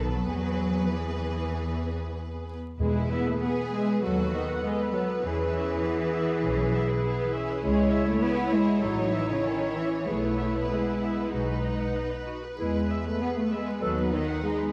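Rich, vibrato-rich violins carry the melody of this lively, cheerful classical-period orchestral passage, with a second violin line, a clear viola section, focused cellos and an intense double bass section filling out the bowed strings from the start. At 2.8 s an airy flute, a mellow clarinet and roomy French horns holding sustained chords join in, along with a brief touch of round, soft-mallet timpani. The rubato playing sits in a wet scoring-stage reverb, with a dark production and vinyl crackle.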